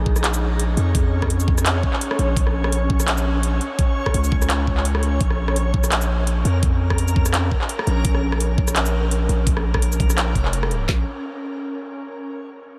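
Drenched in a huge, dreamy ambient reverb, this heavy, tense half-time drum and bass excerpt at 169 BPM in Bb minor pairs a deep, up-front sine 808-style bass carrying a filter sweep with a reversed, detuned, granular swelling texture in lush chorus, over a trap kit of knocking kick, woody snare and handclaps and a layered, tape-warm drum and bass kit of metallic hi-hats, rim click, shaker and claps, before the Bb5 harmony gives way to a brief unharmonised tail at 10.9 s.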